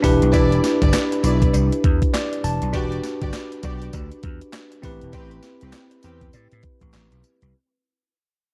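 R&B in a new jack swing style at 100 BPM, this confident, slick clip rides swung sixteenths over Cmaj9/E, Em9 and Am9 chords, fading out across its 7.5 seconds. An overdriven 12-bit drum machine with a thumpy kick, medium-tuned snare, handclaps, hi-hat and tambourine sits up front beside a punchy, amped slap bass and a bright, bell-like tine electric piano that adds a fill at 1.8 seconds. Soft-attack bowed strings with vibrato play smooth, intimate stabs from 0.3 seconds, a very quiet metallic cowbell ticks along in the background, and light reverb gives the whole production a dark, warm finish.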